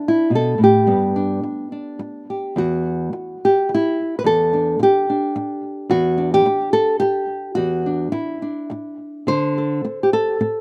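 A light reverb and an outdoor openness give this short folk excerpt an airy, close sound, with a solo nylon-string guitar sitting small and up front, touched by a slapback echo. Fingerpicked in a gentle, pastoral 3/4 at 107 BPM, the guitar ranges from E2 to C5, moving through C and G before settling on Em7 at 2.6 seconds and closing on D7 at 9.3 seconds.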